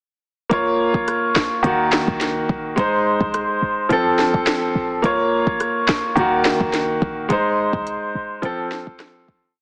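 At 0.5 s a clear baby grand piano, an afro-pop drum kit and a clean 808-style bass all come in together, opening a short dancehall verse in Bb minor at 106 BPM with a tough, hypnotic mood. The piano sits up front, playing held chords in a spread voicing that cycle through Bbm, Ebm, Ab and F twice. The electronic, produced kit drives a dancehall beat: a deep, syncopated kick is answered by a sharp snare layered with handclaps, while crisp hi-hats and rim clicks fill in the pattern. Underneath, the sine-like bass gives boomy, syncopated low notes with a fast attack that decay into a mellow tail. Light reverb and a digital ambience surround the parts, yet the whole recording comes across heavily compressed, with a radio-like, small-speaker character. A fade-out begins at 7.3 s and carries the piece to its close at 9.6 s.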